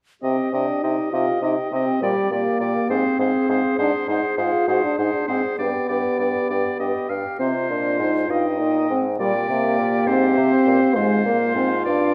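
A wet recital-hall reverb surrounds this short cut from a longer classical-period movement for wind quintet, which is restless and stormy in a quick, straight 6/8. All five players sound together from 0.2 to 12.1 seconds. The French horn sits up front with a distant, roomy tone and light vibrato, while the close-miked clarinet adds a clear accompanying line in the middle register. A clear oboe carries a smooth-topped second line with vibrato, and a hollow, pure concert flute sings the tongued melody from the background. Underneath, a warm bassoon with vibrato anchors the bass from its own roomy distance, as the harmony moves from Cm through Ab7 to G before returning to Cm and closing on Ab69.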